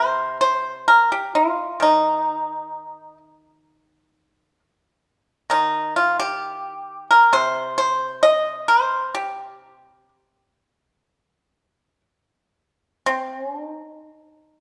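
Longing and contemplative, this short cut from a longer traditional Chinese piece features a solo pipa in free, rubato time, loosely around 58-67 BPM in 4/4. Played with fingerpicks, the pipa sounds dry, percussive and up front, ranging from C3 to Eb5 and set in a moderate scoring-stage reverb with a 1.4-second decay. After an opening passage, a new section begins at 13.1 seconds and the clip ends at 14.6 seconds.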